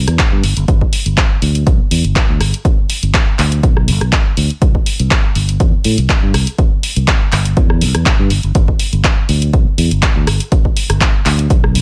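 A growly, bright fingered electric bass opens this joyful, funky filtered disco house excerpt in G major at 122 BPM, its tube-saturated tone pumping with sidechain and moving through a low-pass filter sweep across the whole 11.8 seconds. An analog drum machine joins at 0.1 seconds with dry handclaps, rim clicks and pumping hi-hats over a lightly swung 16th-note feel. A punchy electronic kick sits loudest and up front from 0.2 seconds, with studio reverb on the drums.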